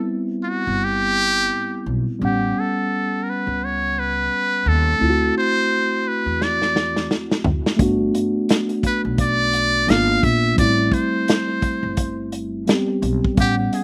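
Jazz-hop with a smoky, mellow mood, this short excerpt moves at 86 BPM in 4/4 with a swung sixteenth-note feel in A dorian. A trumpet with a metal mute carries the melody from the start, its buzzy, thin tone shaded with light vibrato, breathy soft attacks and scooped notes in a jazz solo style, sitting up front with a slapback echo. Beside it, a mellow tine electric piano plays clean, direct accompaniment through chords such as a rootless Am7, A13, D7 and Gmaj7, with a pizzicato upright bass entering at 0.7 seconds with a woody tone. At 6.4 seconds a crunchy breakbeat drum kit arrives with a fill on hi-hat, kick, snare and toms, its dark, rolled-off top, tight kick and medium-tuned snare placed up front in a small-room character. The overall sound is dry, with little reverb, recorded outdoors and free of room sound.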